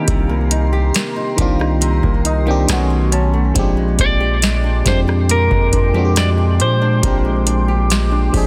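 A late-night, longing mood settles over this short contemporary R&B excerpt, cut from a longer piece and moving at a slow 69 BPM in a straight 4/4. A dark, clean electric guitar carries the melody through lush chorus and digital delay, while a glassy, bell-like FM electric piano with a warbling vintage character supplies the accompaniment and steps forward with a fill between 1.8 and 3.6 seconds. Beneath them, a fingerpicked nylon-string guitar plays delayed arpeggios, and an ethereal FM pad holds slow-blooming chords bathed in ensemble chorus and its own reverb, breathing with sidechain pumping. From 0.1 seconds a booming analog drum machine enters up front with a deep kick, a crisp snare with soft clipping, metallic hats and rim clicks, together with a long, sine-like 808-style bass that sits deep and prominent. The harmony drifts from Cm7 through B9 to Bb13, all set in light reverb and digital ambience and a dense, heavily limited modern master.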